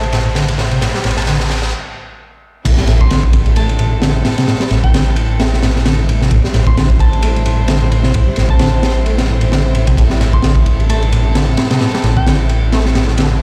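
Raw and swaggering, this breakbeat excerpt at 131 BPM in A minor swings its 16ths over a crunchy, saturated drum kit with dark cymbals and a high-tuned snare, a thick, menacing detuned saw bass holding A1, and a rubbery, resonant acid bass riff, while bowed chamber strings sustain Am7 behind a soft, warbling FM bell melody with phaser and a telephone tone, all building through a drum fill and riser until the drop and a quiet electronic impact land at 2.6 seconds in a large, reverberant room.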